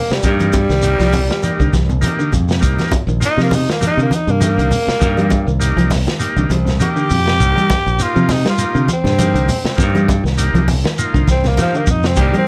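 A growling, raspy tenor saxophone solos up front over a funky, hypnotic afrobeat groove at 100 BPM in C minor, its vibrato and smooth top set against a bright, direct fingered electric bass and a gritty breakbeat drum kit with a tight kick and rolled-off highs. Around them, a dark, slightly broken-up electric guitar picks arpeggios in the background, a buzzy overdriven combo organ with heavy vibrato fills in the accompaniment, and a grainy shekere and ringing congas, the latter set in the background, fill out the percussion, all sitting on a single Cm9 chord in light reverb. Near the close, at 12.2 seconds, a second twangy, scooped guitar adds brief stabs before this cut from a longer piece ends at 12.5 seconds.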